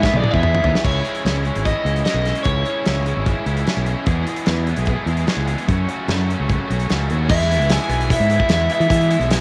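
A straight 4/4 pulse kicks off with a drum fill from the loose indie kit, its fat snare and punchy kick up front, before this jangly, carefree indie rock excerpt settles over a growling, overdriven fingered bass that also sits forward. Two picked guitars carry the riffs, one biting with analog chorus and delay, the other bright and compressed in the background with spring reverb. An overdriven semi-hollow guitar with hollow-body warmth plays the melody until 3.8 seconds and returns at 7.3 seconds, all captured dry on a home cassette recording as the chords move through E, C#madd9 and F#m.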